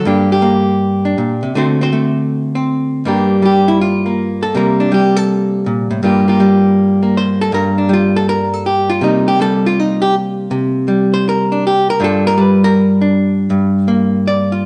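A dark, clean archtop guitar, miked and amplified, opens this cool, late-night solo jazz piece in G minor, picked up front at a brisk 160 BPM with a swung 4/4 feel, moving from G minor to D7. At 3.0 seconds the hollow-body guitar moves into a solo, circling between Gm7 and C5 across its range from G2 to D5. A stone room reverb gives the live-in-one-room sound a wet tail, and the passage is cut from a longer performance.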